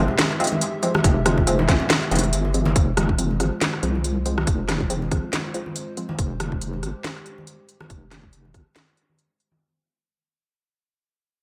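Deep dubstep at 140 BPM in a half-time, swung 4/4 feel, cavernous and brooding in F harmonic minor, opening on an F minor drop that gives way to a fade-out from 2.8 seconds. A deep, wobbling square-and-sine bass with tube saturation sits up front beside a tight, tape-warm electronic kick and a garage kit of cracking snare, crisp hats and rim clicks, while muted, detuned sawtooth chord stabs with dub echo and a dark, wave-folded analog pad with slow attack hover in the background. Distant, ringing congas and bongos played with soft hands drift through dub echo in a large room, and a moderate spring reverb lends the whole excerpt depth.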